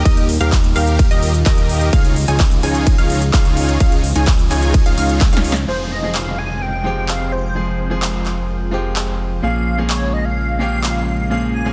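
An overdriven, punchy electronic kick drives this euphoric, anthemic slice of festival progressive house at 128 BPM in F minor, sitting up front from 0.1 s and dropping out at 5.3 s. Beneath it a fat, thick analog bass with tube saturation and sidechain pumping holds the low end throughout, while a lush, warbling pad of detuned vintage saws sustains chords in the background with chorus. The opening drop pairs a huge, detuned supersaw riff, tape-coloured, low-pass filtered and echoed, with a punchy background pluck arpeggio, both falling away at 5.5 s, after a drum fill that starts at 5.2 s and a band accent at 5.5 s. The big-room kit of crisp hats, handclaps, ride and snare carries an overdriven edge and a large-room sheen, running until 10.9 s. In the second half, from 5.7 s, an airy, dreamy lead with chorus and dub echo takes the melody over a brilliant grand piano, as a downlifter drifts underneath, a filter sweep moves across the pad, and the chords settle from Fm to Bbm7. 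The dense, heavily limited master keeps the sound tight and dry.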